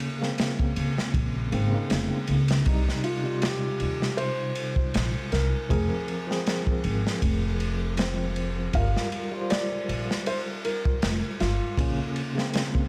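A crunchy breakbeat kit sets a slow 79 BPM trip hop groove in 4/4 with a light 16th-note swing, its tight kick, medium-tuned snare and dark ride cymbal sitting saturated and gritty at the front of a small room. The mood is dark and cinematic, moving through F minor over a cycle of Bbmadd9, Cm, Fm and Gm7 before returning to Bbmadd9 near 11.8 seconds. A felt-muted upright piano carries the melody between F4 and F5, its soft, boxy tone coloured by audible action noise and a tape echo that lends intimacy. Beneath it, a clean tine electric piano heard through its built-in speakers supplies the accompaniment with tremolo and tape echo. A woody pizzicato upright bass on steel strings enters at 0.8 seconds and holds the low end until 12.0 seconds, while vinyl crackle and light reverb give this short excerpt a dusty, late-night atmosphere.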